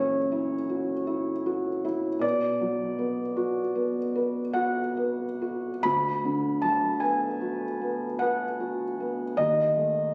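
Nostalgic and tender, this brief passage from a romantic classical nocturne unfolds in 9/8 with a gently elastic rubato. A single felt-muted upright piano carries the whole passage, and its thick felt gives the tone a soft, mellow, intimate quality, placed up front as if the listener were sitting beside the instrument. The harmony drifts from F#7/A# to Bm at 2.2 seconds, settles onto Bm/D at 5.8 seconds, and closes on a rootless B7/D# at 9.4 seconds, leaving the phrase suspended. Tuned slightly low at A4 = 436 Hz, the piano spans from D2 to B5. Captured on a phone in the room, the sound is compressed and framed by a moderate recital hall reverb with a 1.5-second tail.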